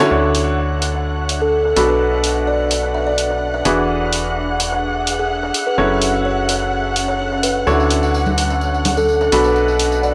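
A straight 4/4 piano house groove at 127 BPM, bittersweet and energetic, is driven by tape-warm electronic hi-hat and cabasa over a very quiet, gritty, pitched-up breakbeat kit of hi-hat, shaker and snare, while a bright, worn baby grand piano riff with 12-bit sampler grit and analog delay sits up front with audible action noise, a hollow, organ-like FM bass enters at 0.1 seconds, dark bowed chamber strings hold sustained chords, an ethereal chorused pad drifts in the background from 1.0 seconds, a buzzing, woody kalimba carries the melody from 1.4 seconds, and ringing tambourine and congas join at 7.7 seconds, all over Dmaj9, Bm7, E9 and F#m7 in a dry, gritty cassette recording with light digital ambience, cut from a longer piece.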